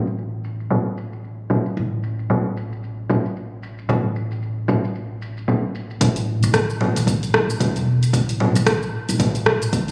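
Heard through a phone in the room, this short excerpt from a longer piece sits in a moderate echo chamber reverb with a 2.4-second tail, with studio reverb and compression applied. It is organic downtempo in 4/4 at 113 BPM, with a 58% swing on the sixteenths and a warm, mystical mood. An up-front upright bass, plucked pizzicato on steel strings, sounds woody and growly, held low between E1 and A1 and coloured by tube saturation and sidechain pumping. A deep house drum kit of congas, hi-hat, rim click and shaker sits forward in the mix, overdriven and re-recorded in a small room, with low-pass filters dulling its percussion, snare, cymbals, hats and room sound. At 6.0 s a second section begins as an electronic kick drum arrives, a deep, layered, overdriven thump also re-recorded in a small room, playing through to the end.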